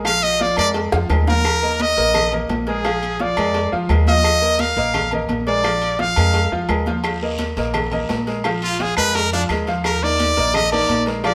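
Driven by congas, cowbell and bongos, agogo bells and timbales, and quiet woody claves at a fast 172 BPM, this fiery, danceable salsa excerpt sets a punchy, vibrato-rich trumpet solo up front over bright concert grand piano and thumpy gut-string upright bass on a Bb5 chord, with a drum fill at 0.9 seconds, a raspy guiro joining at 7.0 seconds, and the whole band playing live in a moderately reverberant stone room.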